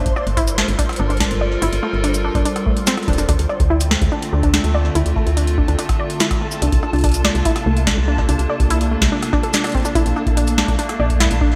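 This melancholic, intricate stretch of IDM comes from a longer piece, moving in a steady 4/4 through a brief cycle of Gm9, Dm7, C9sus4 and Bbmaj7 chords. A warbling, nostalgic pad with a slow attack holds sustained chords under chorus, phaser and its own reverb, while a woody, round FM bass sits dark and soft beneath it. A lo-fi, detuned pluck carries the arpeggios with a short decay, a noise layer and a filter sweep, treated with chorus and digital delay. The drums pair a deep electronic kick with a booming analog machine whose crisp snare, metallic hats, rim click and shaker are bathed in gated reverb and digital delay. In the background, a grainy, flickering granular texture shimmers with ensemble chorus, all within a light reverb and a bright 1980s-style digital production.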